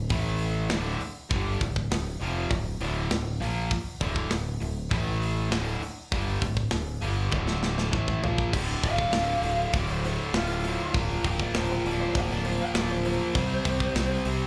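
Hard rock in D minor at 100 BPM, driving and heavy, heard as a live club gig through the venue's PA with light reverb. Three overdriven rhythm guitars (a bright distorted one with slapback echo, a very quiet double-tracked one, and a hollow-body semi-hollow with slapback echo) play the riff in the background over a growling, up-front fingered bass and a tight metal drum kit with bright cymbals and a tight kick. After a drum fill at 7.3 seconds, a lo-fi lead guitar through a small cranked amp enters at 8.9 seconds for a solo as the chords shift from D minor to B-flat over D and C.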